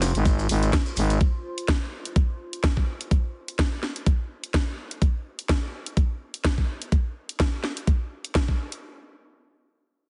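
A dry, heavily compressed, radio-like sound with a dulled top end frames this gritty, bouncy bass house fragment in F minor at 126 BPM, its 16ths swung. A thick, growling FM bass pumps up front for the first 1.2 seconds alongside grainy, distant maracas, while a nostalgic, detuned lo-fi pad with chorus and built-in reverb warbles softly in the background, pumping too, and fades out by 5.0 seconds. A layered garage kit with a cracking snare and hi-hats plays from the start, and from 0.3 seconds an overdriven, knocking electronic kick drives the groove.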